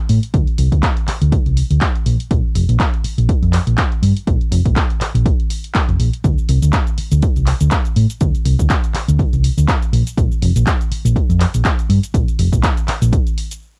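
A dark, round, amped hollow-body short-scale electric bass, fingered and pumping under sidechain through a low-pass filter sweep, opens this sensual, funky filtered disco house excerpt at 122 BPM in a swung 4/4 together with an analog drum machine of handclaps, hi-hat and shaker whose hats, cymbals and percussion also pump. Moments later an up-front, punchy electronic kick joins them, both drum parts tinged by cassette tape in a dry home cassette recording that stops at 13.6 seconds.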